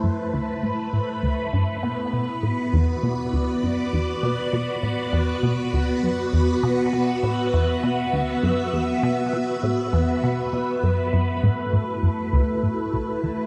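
A bright, swirling string machine with ensemble chorus and phaser holds soft, sustained chords over a juicy, squelchy low pluck riff in this expansive, hypnotic stretch of sequencer-driven ambient space music at 100 BPM. A filter sweep runs through the first 11.4 seconds as the harmony moves from Am to Bm, returning to Am at 11.4 seconds, and the whole is bathed in a lush hall reverb.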